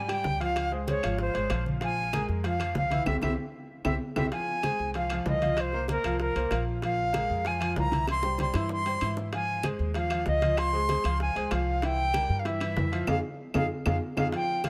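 An airy, reedy silver flute carries the melody up front over a slightly detuned, worn upright piano with audible action noise and a thumpy pizzicato upright bass, opening this driving, danceable salsa excerpt in F minor at 192 BPM. Low-tuned congas with a thick-skinned tone, tight high-tuned bongos and woody claves sit in the background, joined by ringing metal-shelled timbales, with light reverb around the band. Band accents hit at 3.1 and 13.1 seconds, and drum fills arrive at 3.7, 8.1 and 13.7 seconds.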